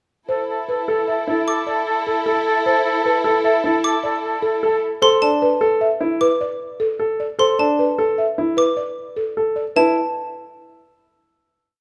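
A straight 6/4 pulse at 152 BPM drives this bright, propulsive piece of minimalist classical pattern music in C major, where a buzzing, dark-toned marimba with soft mallets carries the melody in repeated short cells, a mellow soprano saxophone with light vibrato adds a second line of pulsing notes, and a lush, distant string section holds swelling chords until 4.8 seconds; a vintage-sounding grand piano joins with arpeggios at 0.9 seconds, a sharp, airy xylophone adds high arpeggios from 1.5 seconds, and the moderate reverb of a recital hall frames the close on a final chord.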